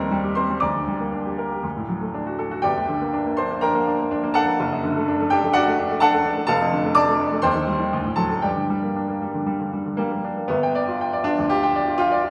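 A bright baby grand piano opens this stormy, agitated excerpt from a classical virtuoso piano study in G minor, playing alone from start to finish. The tempo moves between 114 and 128 BPM in 4/4 with a free, rubato feel, and the instrument spans a broad register from F1 up to D6, tuned to A4 = 443 Hz. Its tone is brilliant and open, sitting up front in the sound. The harmony moves from Cm/Eb and Gm/D through D, Gm, D/F# and Dm/F before returning to Gm, then turns to a G7 chord for a new passage at 10.5 seconds that runs to the end at 12.3 seconds. A generous two-second reverb, like that of a church or concert hall, surrounds the playing with a wet, resonant space.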